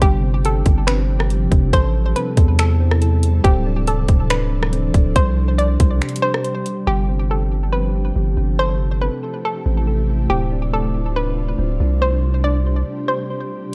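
A trap drum kit with a hard-clipped kick, metallic hats, finger snaps and rim clicks sits up front in this blissful, floating cloud-rap piece in C major at 140 BPM in half-time until it drops out at 6.8 s, while a deep, mellow sine 808 bass, a hollow, nasal square pluck melody with chorus and delay, soft, round electric-piano-like synth arpeggios, and an ethereal, warbling pad with ensemble chorus drift over looping G7sus4, Am7, Dm7 and Csus2 chords in a dark, dry mix.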